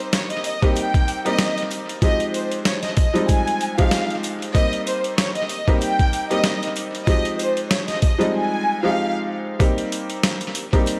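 Boom-bap hip-hop with a gritty, dark mood, this short cut from a longer piece rides a swung groove from a sampler-style drum kit that sits up front, its compressed, pitched-down sound built on a thumpy kick, a medium-tuned snare and hi-hat, all colored by tape echo. An upright piano carries the accompaniment throughout, its tone brilliant and woody yet worn and slightly detuned, with a cassette-tape character. Above it, a studio violin section plays the melody in a close, expressive, bowed ensemble sound with vibrato and a touch of tape echo, dropping out at 9.1 s. Very quiet sleigh bells add a jingly, dry shimmer in the background. The harmony moves between Cm7 and Fm7, and the mix is echo-heavy with a light, small-room reverb, shifting into a brief new section at 9.6 s.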